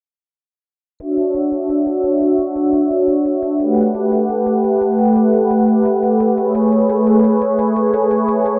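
A dark, warm production bathes this short cut from a longer liquid drum and bass piece in a moderate plate reverb and a low-pass filter, with a filter sweep running through the whole passage. At 173 BPM in 4/4 with a straight feel, the mood is uplifting and lush, centred in D major. The warm analog pad sits up front from 1.0 s, holding smooth, detuned sawtooth chords with a soft attack, long release, chorus and a moving notch, moving from Dmaj9 to Gmaj9 at 3.6 s and Amaj9 at 6.4 s. Beneath it, a very quiet electronic hi-hat adds a gritty, tape-warm, compressed sampler texture, its sound re-recorded in a small room. The passage reads as one continuous section built on the pad's sustained harmony.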